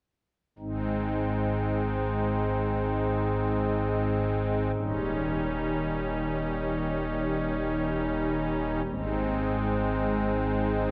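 A solo pipe organ on shimmering, soft string celeste stops enters up front at 0.6 s with a reverent, majestic classical chorale in free time and Ab major, its romantic voicing spanning Eb1 to Eb4 and moving from Ab through Eb7 back to Ab by 8.9 s inside a wet church reverb, in a brief fragment cut from a longer piece.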